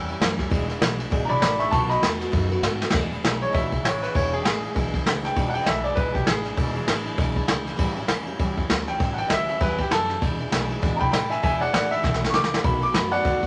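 Rollicking, upbeat rockabilly at 198 BPM with a swung feel in E mixolydian, where a brilliant, woody upright piano with audible action noise carries the melody and takes a solo turn through the first 2.9 seconds, over a full-bodied picked dreadnought guitar with finger squeak, a thumpy gut-string upright bass played pizzicato, and an up-front brush kit with dark cymbals and a boomy kick that drops in fills at 2.8 and 12.0 seconds, the whole cut from a longer piece and set in a moderate large-studio reverb.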